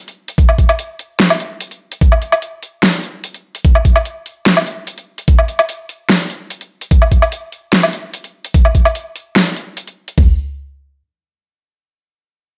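An overdriven electronic dubstep kit leads this aggressive, heavy cut from a longer piece, its knocking kick, bright hats and toms sitting up front from 0.4 seconds, re-recorded in a small room. A second layered electronic kit enters just before it, carrying a huge snare, metallic hats and a woodblock with a tape-warm tone, also placed close and forward but a little lower in the mix. The groove runs at 147 BPM in 4/4 with a half-time feel, giving the heavily produced drums a slow, weighty stride. Both kits drive the opening section together within a digital ambience, then stop around 10.2 to 10.3 seconds as a brief closing section begins.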